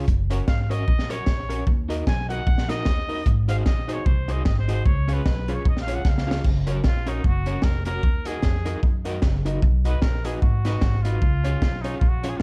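A slightly broken-up electric guitar with tremolo and worn, slightly detuned upright piano stabs open this cheerful, swinging ska excerpt, joined at once by woody pizzicato upright bass and a crunchy, gritty breakbeat kit with a high-tuned snare and a fill at 6.0 seconds, while a breathy, intimate trumpet with vibrato and slapback echo solos from 0.5 seconds in a small room.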